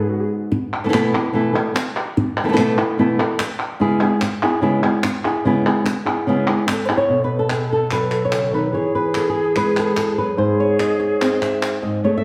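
Fiery and intense, this flamenco fragment, cut from a longer piece, is led by an up-front, fingerpicked acoustic guitar carrying the melody in a warm tone over chords such as B7sus4 and C#m7, while crisp palmas hand claps, with a small-room character, keep time from 0.7 s. A pure, hollow concert flute, close-miked with vibrato and tongued notes, adds a second line, briefly at the start and then again from 7.1 s as the harmony moves through B5, E and G#. A wet, large studio reverb places the whole ensemble further back in the room.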